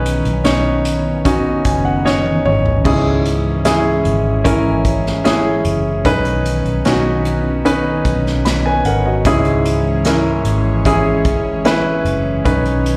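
Moving in a straight 4/4 at 75 BPM, this tender, hopeful pop ballad in B major drifts between Badd9 and C#m, heard as if from a live gig through the venue's PA with the light reverb of a recital hall, cut from a longer piece. A present, polished grand piano sits up front with a slapback echo and plays a fill from 1.3 to 2.9 seconds, while an airy, breathy pad with chorus sustains soft chords and a foam-muted electric bass adds a round, punchy low end. An acoustic drum kit played with bundle sticks enters at 0.1 seconds, distant and roomy with dark cymbals, and adds its own fill from 2.1 to 2.9 seconds.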